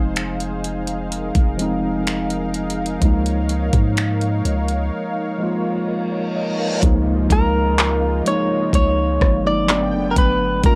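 A moody, late-night slice of contemporary R&B, cut from a longer piece, moves at an unhurried straight pulse in 4/4. A mellow tine electric piano carries the accompaniment up front, resting on a lush, detuned sawtooth pad with chorus and a long, deep 808-style bass whose sine tone decays after each note. From 0.2 seconds a produced electronic kit joins with a knocking kick, metallic hats, finger snaps, handclaps and rim clicks, re-recorded in a small room and sitting loudest in the mix. The harmony moves from Fm7 to Db69, and a break arrives where a reverse cymbal builds into an impact at 6.8 seconds. A clean, compressed guitar, recorded direct and picked, then takes a short melody before the harmony shifts to Gmaj7. The whole is a dry home recording on cassette, with tape coloring the piano, pad, drums and guitar.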